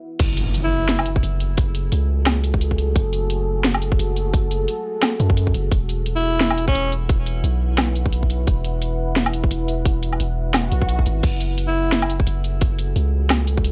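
A swung, half-time drum and bass groove of tight, up-front electronic kick, cracking snare, hi-hat, crash and woodblock in small room ambience drives this tense, spacious fragment from a longer piece, where a deep sine 808 bass with tube saturation sits beneath a dark, detuned sawtooth pad pumping with sidechain and chorus, background electronic impacts and swells arrive at 0.3 and 10.7 seconds, and a breathy, whispered alto saxophone with light vibrato and tape echo slips in brief intimate phrases from 0.6 seconds, all within a dry, gritty hardware sound.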